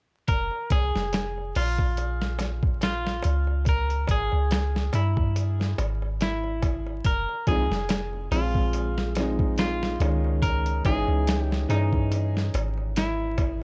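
Trip hop at 71 BPM in F minor with a swung 16th feel, this hypnotic, cinematic excerpt is cut from a longer piece and moves through Fm, Dbm, Fm7 and Dbmadd9. A bright, clean semi-hollow electric guitar carries the melody through tape echo over a deep, round 808-style bass and a gritty, pitched-down boom bap sampler kit with a thumpy kick and studio reverb, both up front, while a small clay-shelled darbuka sits in the background. At 7.5 seconds a woody upright piano with long sustain and harmonic tremolo joins, and the whole dry recording carries worn cassette warble, vinyl crackle and drifting pitch.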